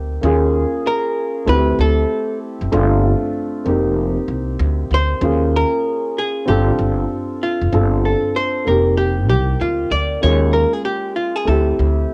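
A clean, hollow-bodied electric archtop guitar carries the melody from 0.9 seconds over a dark, mellow grand piano with audible action noise and a cassette-tape tint, while a woody, growly pizzicato upright bass sits up front in this cool, smoky jazz-hop excerpt at 96 BPM in G minor, swung on the 16ths and moving through suspended ninth chords in a small-room home recording.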